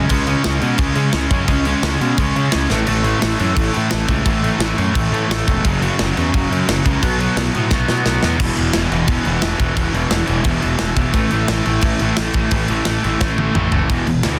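Punk rock at 174 BPM in straight 4/4, this rowdy, energetic passage is cut from a longer piece. A double-tracked, distorted electric guitar sits up front with the picked riff, moving through C#5, A5, F#5 and B5 chords before a new section begins at 8.4 seconds on E5 and then A5. Beneath it, a fuzz picked electric bass carries the bass line with a growly, overdriven tone, direct and amped. A tight metal drum kit plays with a gritty, saturated studio-room sound, combining a tight kick, medium-tuned snare, toms and crash cymbal under a rolled-off top, with fills at 2.7 seconds, leading into the new section at 8.4 seconds, and again just before the close. The mix is dry, with little reverb, and comes through a dense, heavily limited modern master.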